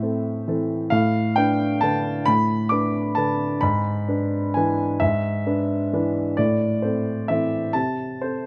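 A classical piano waltz in 3/4, bittersweet and wistful, where a solo grand piano with a warm, natural tone sits up front in light reverb, its rubato phrasing drifting through Am, Bm7b5/A and E7/G# before settling back on Am across this 8.5-second fragment cut from a longer piece.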